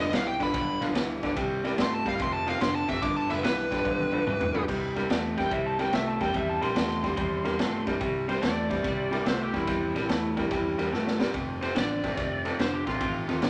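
A rollicking, swaggering electric blues shuffle at 144 BPM in C major swings along, cut from a longer piece, with a raw, gritty garage drum kit, boomy and saturated with dark cymbals, pumping up front beside a slightly broken-up, lo-fi riff guitar from a small old amp and a round, punchy foam-muted bass. A bright, smooth overdriven lead guitar takes the opening solo until about 4.6 seconds, then a fingered slide guitar carries the second solo from 5.4 seconds to the end, while a vintage grand piano sits in the background and steps forward with a brief fill at 7.2 seconds. Drum fills mark the turns, and a moderate large-studio reverb gives the band a roomy, live sound.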